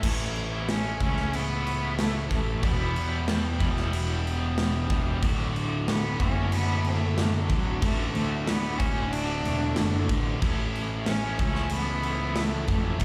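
Heard as a live gig through the venue's PA with club reverb, this cathartic, restless excerpt of quiet-loud alternative rock pairs an up-front, punchy big rock drum kit with crashing cymbals and a growly fuzz-overdriven picked bass, while an overdriven electric guitar riffs with tremolo and slapback echo over a very quiet distorted guitar riff, and from 0.6 s a nasal, boxy bowed cello with light vibrato and its own slapback echo carries the melody through a cycle of A, Em and D.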